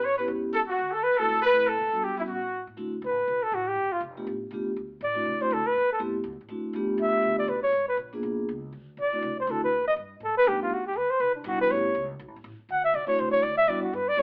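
A soft-attack flugelhorn and a clear, close-miked trumpet open this playful, relaxed swing jazz excerpt at a brisk 242 BPM in D mixolydian, over a woody pizzicato upright bass, with a mellow, ringing vibraphone played with soft mallets joining at 0.2 s. The trumpet's brief second line with light vibrato ends at 2.6 s, and from 2.8 s the up-front flugelhorn takes a warm solo full of vibrato and scooped notes, while the vibraphone's metallic accompaniment stays prominent and the bass sits far back in the mix. The band plays live in one room with moderate studio reverb, heard through an AM radio sound.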